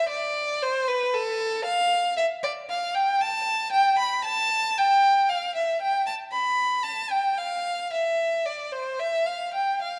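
Dark, moderately reverberant scoring-stage sound surrounds a single up-front bowed violin, clear and focused with vibrato, playing a solemn, grave baroque-style suite movement in a rubato 3/4 between A4 and B5 in this short passage from a longer piece.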